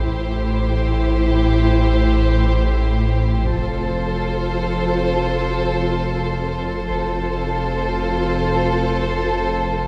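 Drenched in a wet concert-hall reverb, this ominous, tense stretch of suspense film score floats in free time over a shift from Am7 to F. Two violin sections carry a melody and a pure, distant second line, bowed sul tasto with soft attacks, while dark violas with light vibrato and woody cellos fill the middle and lower register. Beneath them, a floating double bass section shares its register with a punchy sine sub bass drone with a pitch-drop attack that sits up front for the full 9.9 seconds.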